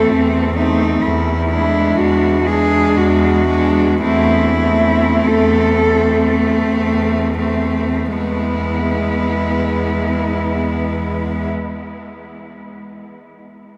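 Tender and warm, this lyrical classical fragment for a cello ensemble moves in a flexible, rubato triple metre, easing and slowing through its first 8.1 seconds before the music turns to a new passage. A single cello, bowed with vibrato and placed up front, carries the melody with a focused tone and a smooth top. Beneath it, a second cello of rich character sings a companion line, while a third, clear-voiced cello supplies the inner accompaniment. From 0.1 s, a fourth cello holds a low E in the bass, its sound even, close, rich and smooth. The harmony sways between A minor over E and E7 before settling on E major near 8.1 s, and the whole ensemble sits in a vast, echoing space with a huge, lingering reverb that blurs the lines into one glowing sound.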